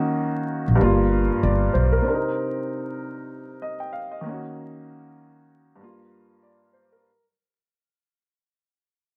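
Swung sixteenths in a steady 4/4 give this short boom-bap hip-hop fragment its loping feel, and the mood is tough and dark. An upright piano carries the accompaniment from the start to 7.2 seconds, sitting up front with a woody tone and long sustain, treated with cassette-tape coloring, filtering and a plate reverb. A pizzicato upright bass with steel strings appears briefly from 0.7 to 2.0 seconds, acoustic and warm, placed close in the mix. The harmony moves through Ebm7, Gm7 and Cm7 before returning to Ebm7 and Gm7, all over a bed of vinyl crackle in a moderate studio ambience. Cut from a longer piece, the passage fades out across its whole length.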